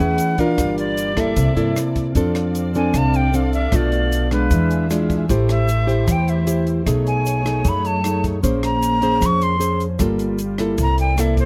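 Breezy and romantic, this bossa nova excerpt moves at 153 BPM in F major, with an up-front, breathy silver flute carrying the melody and taking a solo from 2.2 seconds over a full-bodied, fingerpicked nylon-string guitar whose finger squeaks come through clearly. A woody, thumpy pizzicato upright bass and a veiled, con sordino string section holding soft-attack chords in the background fill out the harmony, while a grainy tube shaker and a compact, dry cocktail kit with a punchy kick, hi-hat and rim click, entering at 0.2 seconds, keep the pulse. The sound is close and detailed with little reverb, and the chords drift through rich extensions such as Amaj9, C13 and Bbm9.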